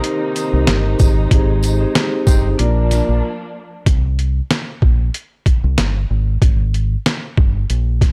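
A swung 94 BPM boom-bap groove in C minor drives this tough, moody hip-hop excerpt, with gritty, pitched-down sampler drums and a round, punchy dub bass up front, mellow soft-mallet vibraphone with slow motor vibrato and bowed strings with portamento holding chords over Cm7 and Abmaj7, a jingly background tambourine, and a very quiet saxophone stab at 2.3 seconds, before the vibraphone drops out at 3.2 seconds and the drums and bass carry on alone after 3.9 seconds in a dry, saturated small room.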